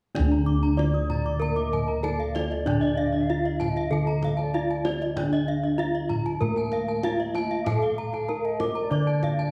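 Shimmering and hypnotic, this cut from a longer Balinese gamelan piece moves at 96 BPM in a straight 4/4 in D pelog, with dark, round bossed gongs up front carrying the bass beneath a smooth bronze metallophone accompaniment. A ringing horn-mallet metallophone melody sits in the background, while two bright, paired-tuned metallophone arpeggio lines beat and shimmer above, and a tight, vintage-sounding kendang supplies the percussion. From 1.1 s a breathy, mellow bamboo bansuri adds a second line with vibrato and tongued notes, all carried in the reverberant air of a recital hall.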